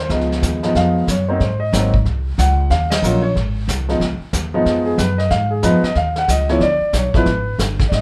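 A brisk swing at 184 BPM in 4/4 drives this short, sophisticated jazz piano trio excerpt, its eighth notes lilting with a light shuffle. A concert grand carries the melody up front, intimate and natural, its long sustain and audible action noise adding a close, tactile presence. The upright bass underpins it with woody, thumpy pizzicato on steel strings, while a vintage brush kit enters at 0.1 seconds with brushed snare, hi-hat, kick and ride, its dark cymbals and rolled-off top paired with a punchy kick. The harmony moves through Db9, Ab7 and Ebm7 before returning to Db9 and settling on a Ddim7 color, with a band accent landing at 2.9 seconds. A moderate club reverb gives the trio a compact, lively room around it.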